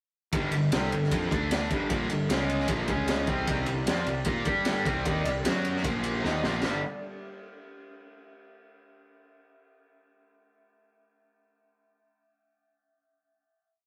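A bright, up-front distorted guitar powers a power-chord riff through this anthemic 152 BPM hard rock piece, joined by a second, scooped and compressed distorted guitar in the background and a growly fuzz bass that follows the riff in eighth notes, while a gritty garage drum kit with a boomy kick and high-tuned snare keeps a big straight groove, a mellow, flute-like chorused pad hums behind, and after a drum fill at 6.2 seconds the rough rehearsal-room take rings out on a final chord from 6.6 to 8.2 seconds.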